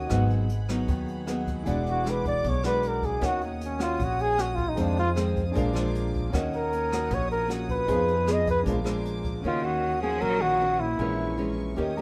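A mellow, up-front flugelhorn solos with light vibrato and scooped notes over an intimate, melancholic bossa nova in Eb minor at 154 BPM, backed by fingerpicked nylon-string guitar with finger squeak, growly pizzicato upright bass, a warm grand piano in the background with audible action noise that adds a fill at 11.8 seconds, floating sul tasto chords from a dark string section, and a distant brush kit that stops at 9.3 seconds before a focused bowed cello enters with a second line at 9.4 seconds, all in this light-reverb excerpt from a longer piece.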